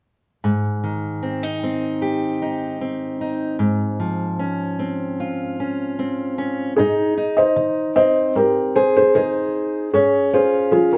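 A fingerpicked steel-string acoustic guitar opens this hopeful, tender folk-pop ballad at 0.4 seconds, its close, up-front tone carrying a touch of finger squeak as it moves through Abmaj7 and Dbmaj7/Ab chords in Ab major at a relaxed 76 BPM. At 6.8 seconds a felt-muted upright piano enters with the melody, soft, mellow and intimate, sitting near the listener above the guitar. Moderate large-studio reverb gives the pair a gentle sense of space in this excerpt cut from a longer piece.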